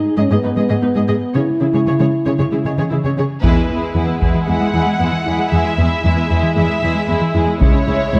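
A dark, warm mix on a moderately reverberant scoring stage carries this brooding, futuristic hybrid orchestral and electronic film-score excerpt at 115 BPM in 4/4, where mellow French horns hold sustained chords until 2.9 seconds over a very quiet vintage baby grand piano texture, a lush viola accompaniment, an expressive up-front cello bass line, and a round, tine-like FM synth pluck playing chorused, delayed arpeggios in the background, before distant bowed violins enter at 3.4 seconds with a melody and a second line as the ensemble lands a band accent on the shift to E, joined by saturated taiko drums played with heavy sticks, which return at 7.6 seconds as the harmony moves back to C#m.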